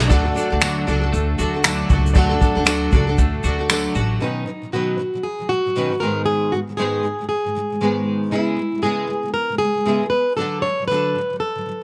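Heartfelt and carefree, this acoustic pop clip moves at 117 BPM with a 16th-note swing, opening on a full band: a double-tracked, fingerpicked nylon-string guitar, an intimate, boxy upright piano with audible action noise, a bright, twangy twelve-string electric guitar playing arpeggios, a woody, thumpy pizzicato upright bass, and a vintage brush kit with finger snaps, a tight kick and shaker in a small pumping room, joined at 0.6 seconds by a jingly, saturated tambourine in the background. At 4.2 seconds the piano, bass, twelve-string and drums drop away, leaving the up-front nylon-string guitar under a full-bodied, fingerpicked jumbo steel-string acoustic that carries the melody through to 11.8 seconds. The chords move from D through Badd9, G#m and C#m7 before returning to D.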